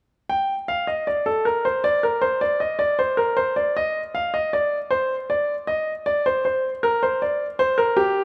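In a straight 12/8 at 52 dotted-quarter beats per minute, this brief classical fragment of a baroque-style two-part invention in G minor feels driving yet contemplative, with a clear, natural solo grand piano sitting up front from 0.3 to 8.2 seconds, spanning G4 to G5 and carried by a moderate recital-hall reverb.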